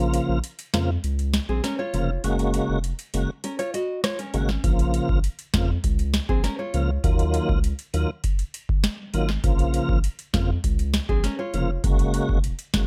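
A booming, overdriven analog drum machine drives this hypnotic, tough dancehall passage at 100 BPM in Bb minor, its deep kick, tonal snare, rim click and metallic hi-hats re-recorded in a large room and sitting up front, with the kick dropping out from 3.4 to 4.6 seconds near the end of the opening break. Beneath it a thick, saturated sine sub bass holds the low end, while a full, lightly overdriven tonewheel organ with chorus vibrato, a slow rotary speaker and sidechain pumping carries the chords through Bbm, Gbadd9 and Ebmadd9. A fingerpicked classical nylon-string guitar adds up-front arpeggios from 1.5 to 7.0 seconds and again briefly at 11.1 seconds, all in a dry mix cut from a longer piece.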